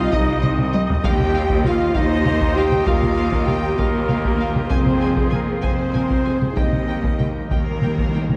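The excerpt opens on a Cm chord with the full orchestra already sounding, as a mellow French horn section and a woodwind section hold sustained chords over rich cellos and quiet double basses, while distant violas fill in the accompaniment and a hollow flute plays a second line alongside a clear, intense violin second line beneath a lush, softly placed violin melody. Hard-stick taiko drums sit up front, compressed and saturated, with a fill at 0.6 seconds, driving this majestic, triumphant film-score passage in Eb major at a slow 65 BPM in 6/8 through Ebadd9 and Fm. Timpani struck with hard mallets enter at 6.6 seconds for a closing fill on Eb, all within a dark concert-hall reverb.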